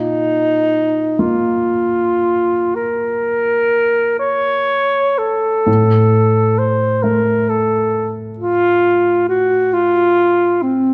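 Romantic classical music for alto saxophone and grand piano in a solemn, yearning mood, this fragment of a longer piece moves in a free, rubato 12/8 as the mellow saxophone sings the melody up front with light vibrato, a soft attack and a smooth top over the warm, deep-bassed accompaniment of the concert grand, both heard together throughout the 10.9 seconds in a wet recital hall.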